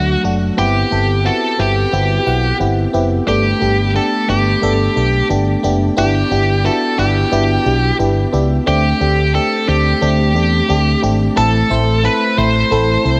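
1980s-style pop at 89 BPM in 4/4, glossy and romantic, this excerpt features a bright, distorted high-gain lead guitar carrying the melody with shimmer reverb and digital delay over a glassy, bell-like FM electric piano treated with chorus and phaser. A mellow, round fretless electric bass anchors the low end with a dark, amped tone, all three parts playing throughout and sitting up front in a lush hall reverb. The harmony moves through Cmaj7/G, Gadd9, Em7/G and D7sus4 before shifting to Am at 11.4 seconds as a new section begins.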